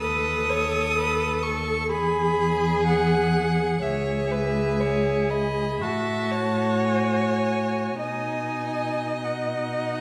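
A wet recital-hall reverb surrounds this tender, serene classical slow movement for string quartet, played with rubato in 4/4, as a warm, focused violin carries the smooth-topped melody over a distant, rich second violin line, a viola adds expressive accompaniment with vibrato and portamento, and an up-front cello anchors the bass with its own gliding portamento, all four bowed by single players across the 10-second excerpt.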